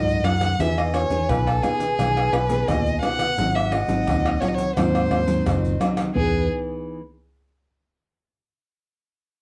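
A short, festive cut from a longer samba and choro piece in E major opens with violin, jazz flute, nylon-string guitar and fingered electric bass sounding together over a rootless B7, with egg shaker, pandeiro, tamborim and a tight surdo joining a moment later. At a straight 86 BPM in 4/4, the bowed solo violin carries the playful melody up front, its soft attack, vibrato and portamento making it expressive and close. A breathy, hollow metal flute with a crisp chiff and its own vibrato adds a mellow second line. The fingerpicked classical guitar, with fresh strings and audible finger squeak, accompanies through Emaj7 and a shift to G#7 at 3.4 seconds, while the amped bass is punchy and growly, and the compressed, saturated percussion keeps things lively. Moderate studio reverb and a worn cassette coloring with warbly pitch drift give the recording an aged character. The music returns to Emaj7 at the start of a new section at 6.2 seconds. 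The percussion stops at 6.3 seconds and the violin, flute and bass at 6.5 seconds, leaving the guitar to ring on until 7.0 seconds.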